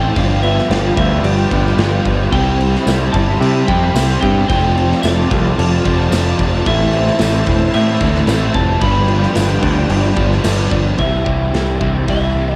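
A twangy, warbly lead guitar through a small old amp opens over an airy chorused pad, bright clean arpeggios, layered overdriven and semi-hollow guitar riffs, a growling up-front bass and a punchy rock kit in this dreamy, blissful shoegaze excerpt at 111 BPM in C major, with a jingly tambourine entering at 2.9 s and a lo-fi cassette haze over the chords as the pad and double-tracked riff stop at 11.0 s.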